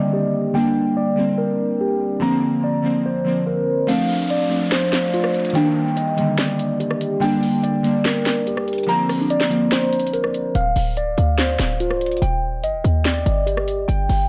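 A half-time trap groove at 144 BPM in 4/4 sets a menacing, melancholic tone in D phrygian, tuned slightly sharp to A4 = 445 Hz, in this dark, lightly reverberant hip hop excerpt cut from a longer piece. A mellow, clean tine electric piano plays up-front arpeggios from the start, coloured by phaser, digital delay and a low-pass filter, while glassy digital keys give full-bodied, evolving chordal accompaniment with chorus and a filter sweep. The chords move through Ebmaj7, Gm, Bbadd9 and Dm7. At 3.9 s the electronic trap drum kit arrives with a sharp snare, metallic hi-hats, handclaps, rim clicks and crash cymbal, as a background downlifter sweeps beneath, and the kick stays muted until 10.6 s. At that point the glassy keys stop and a punchy, tight 808-style bass takes over the low end, its sine tone carrying a noise layer and a fast, decaying attack.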